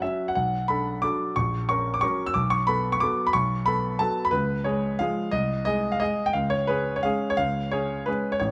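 Closely and intimately recorded with light reverb, a clear, up-front grand piano, its action noise audible, plays an elegant, nostalgic classical waltz alone from 0.0 to 8.5 seconds, spanning A1 to E6 with uneven, rubato beats in 3/4 as the harmony moves from Bm7 through F#/A# and B5 to C#, G#/B# and back to C# in this fragment cut from a longer piece.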